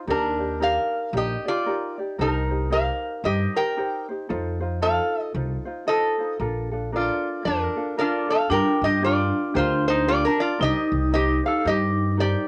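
Swung eighths in an easy 4/4 carry this dreamy, sunny Hawaiian excerpt from a longer piece. A nasal, metallic lap resonator guitar sings the slide melody up front over a light, thumb-plucked ukulele and a woody, growly pizzicato upright bass, with the guitar and ukulele carrying a cassette tint. At 8.5 s the chords shift to a minor footing and a ringing, band-limited vibraphone with hard mallets and medium motor vibrato enters on a second line, all in a moderate booth ambience on a home cassette recording.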